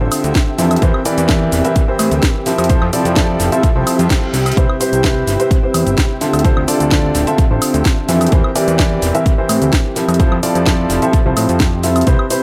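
A punchy electronic kick drum sits up front, with a tape-warm weight and a little studio reverb, driving this joyful, feel-good piano house excerpt cut from a longer piece. A grand piano carries the riff, close and mellow, pumping with the sidechain and trailing dub echo through a cycle of Dm7, C7/E, Fmaj7 and Cmaj7. Underneath, a fat analog bass mixes sawtooth and square tones, detuned and saturated, with a fast filter pluck that holds into sustained notes, also pumping against the kick. A house drum kit adds bright hats, shaker, woodblock and a cracking, overdriven snare, washed in reverb and dub echo. In the background a cloudy granular pad drifts with slow attacks and a long, blurred release, while a reverse cymbal sounds from 3.8 to 4.6 seconds, all within an echo-heavy mix under a light reverb.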